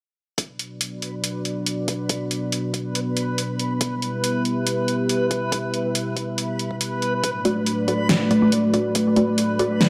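Opening at 0.4 s with an up-front, tape-warmed deep house kit of hi-hat and fat snare over a deep, high-pass-filtered electronic kick, this meditative, dark deep dubstep fragment in a swung half-time feel settles onto a moody, detuned analog pad with chorus, adds a bright, reversed, granular swelling texture with its own built-in reverb, and from 7.4 s brings in muted sawtooth dub chord stabs through phaser and dub echo, all set in a dark, wet echo-chamber room.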